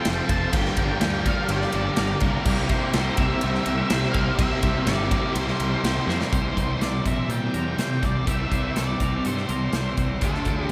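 Blissful and dreamy, this 124 BPM shoegaze and dream pop rock excerpt in C mixolydian drenches a dark, delayed octave-fuzz lead guitar melody, thick fuzz and crunchy overdriven guitar riffs (one with reverse reverb, a second double-tracked and very quiet until 6.3 s), faint twangy clean arpeggios, a brassy detuned analog pad that sustains chords until 6.3 s, a growly overdriven fingered bass and a punchy, up-front big rock drum kit with bright cymbals in a huge ambient reverb, moving from F through Gm7 and C7 before a drum fill at 6.1 s lands on C.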